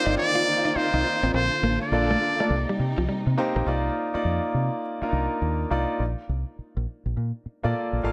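A swung sixteenth-note groove in 4/4 drives this bouncy, slick R&B excerpt, anchored by a round, punchy fingered bass and an intimate concert grand piano with audible action noise, both up front and playing through to 8.1 seconds. A buzzy, metal-muted trumpet opens with a breathy jazz melody full of scooped notes until 2.9 seconds, while lush bowed strings with portamento hold sustained chords and a clean, compressed electric guitar with subtle chorus picks a riff in the background, both gone by 3.7 seconds. The harmony moves among Cm11, Bbmaj7 and Cm7 under a light reverb.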